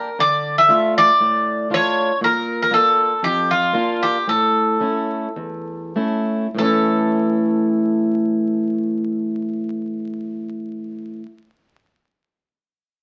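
Heard through the crackle of a very old 78 rpm record with moderate studio reverb, this brief, brooding fragment of Greek bouzouki-band folk sets a bright, metallic bouzouki melody with double strings, some of them octave-doubled, up front over a dark, boxy, fingerpicked swing-style acoustic guitar, moving through D minor, B-flat and A as the pace slows between 2.2 and 6.6 seconds.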